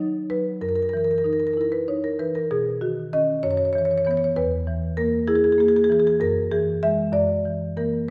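A woody, percussive solo marimba with padauk bars, struck with medium-hard mallets and sitting up front with a boxy character, flows through a warm, rubato contemporary classical passage in 6/8, spanning E2 to E5 and moving from D#m7 through Badd9 and E to a closing F#aug7 at 7.1 seconds, all within the moderate reverb of a recital hall in this 8.1-second fragment cut from a longer piece.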